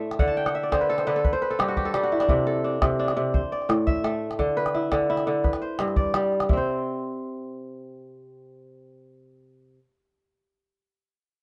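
West African traditional music in 12/8, this short excerpt from a longer piece moves at 114 beats per minute, counted in dotted quarters, with a straight, joyful and hypnotic feel. The kora carries the arpeggios from the first moment to 9.9 seconds, sounding bright, crisp and ringing up front across a range from G2 to A5, and it opens with a fill that runs to 2.3 seconds. A deep calabash supplies the percussion from 0.1 to 6.7 seconds, heard in a small room. The harmony settles through Amadd11/C, Am, Bmadd11/D and G before the first section gives way to a second at 6.5 seconds, where the chords fall away; the calabash drops out shortly after, and the kora continues on its own. Light reverb and a dark production frame the acoustic instruments, and the tuning sits slightly below standard pitch.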